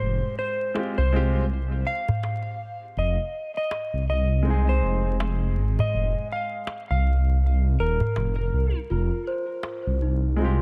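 A clean, dark lap steel guitar carries a melancholic slide melody through tape echo over woody upright piano chords shaded by harmonic tremolo and a deep, rumbling detuned saw bass in this brooding, swung trip hop fragment, with a close, dry darbuka joining at 0.8 s and a delicate, bell-like celesta entering with echoing arpeggios at 8.9 s, set in an echo-heavy mix of light reverb and vinyl crackle.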